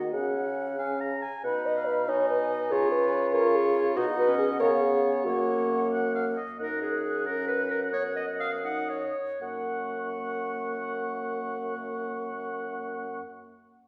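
Rocking along in a lilting 6/8 with a flexible, rubato feel, this lively, cheerful classical-period movement for wind quintet is a short passage cut from a longer piece. An airy, hollow concert flute carries the tongued melody with vibrato, while a warm oboe with light vibrato and a smooth top traces a second line just beneath it. A mellow French horn, the most prominent voice in the blend, and a bright clarinet fill out the accompaniment, with a dark, vibrato-tinged bassoon holding the bass. The harmony moves through chords such as C#sus4, G#m/B and C#7 before settling on F#, and the pace slows between 5.9 and 9.4 seconds as the music passes into a new section. The ensemble is heard from further back in a recital hall with a generous, wet reverb that gives the whole group a roomy, concert-stage feel.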